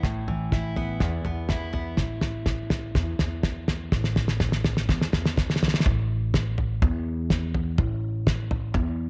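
Warm and anthemic, this indie folk piece at 124 BPM in 4/4 builds through a drum fill on kick, snare and toms from a cloth-damped, thuddy, up-front kit with a fat snare and tight kick, over a woody, thumpy gut-string upright bass plucked pizzicato, while a full-bodied fingerpicked dreadnought acoustic guitar with audible finger squeak plays only until 3.9 seconds, the harmony moving from Asus2 to A5 at 5.9 seconds in light reverb before the cut at 9.1 seconds.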